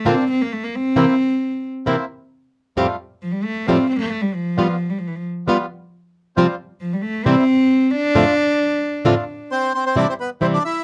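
Close, detailed miking and a light reverb give this short tango fragment an intimate, present sound, cut from a longer piece. At 133 BPM in 4/4 with a loose, rubato feel, the F major music is playful and nostalgic. A single bowed cello carries a solo from the opening through 10.0 seconds, its soft attack and pure, floating tone sitting close and up front. Beneath it, a fingerpicked acoustic flamenco guitar supplies accompaniment with audible finger squeak, while a dark, reedy bandoneon punctuates with stabs across progressions from Bbadd9 through C7, G7 and F6. Near the end, at 9.5 seconds, a second bandoneon takes up the melody with a vintage, band-limited, warm character.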